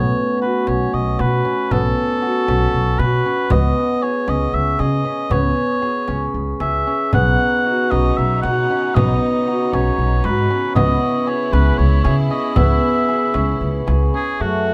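Pensive yet urgent, this excerpt of contemporary chamber music moves in 7/8 at 232 eighth-note beats per minute, with a solo oboe in classical style carrying the melody over shimmering, ringing cimbalom arpeggios and a dark, woody pizzicato upright bass, all three up front. A close, dry frame drum sits in the background from 0.7 seconds. At 7.1 seconds a warm, intimate string section enters with bowed sul tasto chords and light vibrato, as the harmony shifts between Bsus2, C#m7 and Badd9 under a light reverb.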